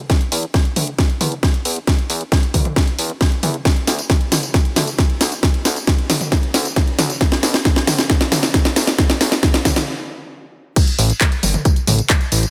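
Emotional and euphoric, this uplifting trance excerpt moves at 135 BPM in a straight 4/4, cut from a longer piece. A punchy electronic kick sits up front with a tape-warm, layered character, joined by a house drum kit whose cracking snare, handclaps, hi-hat, tambourine, toms and crash cymbal carry a drum fill through the build-up until 9.9 seconds. A fat analog bass from G1 to E2, thick and detuned with sawtooth, square and triangle tones, ring modulation and a filter sweep, pumps through sidechain and a high-pass filter. After a brief stop, the drop lands at 10.8 seconds. A lush hall reverb with a 2.0-second tail gives the whole a spacious sheen.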